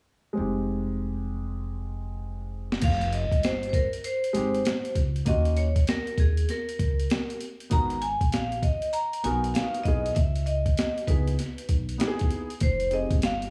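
A swung 98 BPM hip hop groove in 4/4 sets a nocturnal, mellow jazz-hop mood, opening with a dark, mellow baby grand piano and a woody, pizzicato upright bass with gut strings moving through minor ninth chords from Fm9. At 2.7 seconds a gritty, compressed boom bap kit enters up front, with a thumpy kick, high-tuned snare, hi-hat and crash, tape-warm and re-recorded in a large room. At 2.8 seconds a bright, metallic vibraphone struck with hard mallets takes the melody up front, ringing with a slow motor vibrato over a dry, small-room sound in this excerpt from a longer piece.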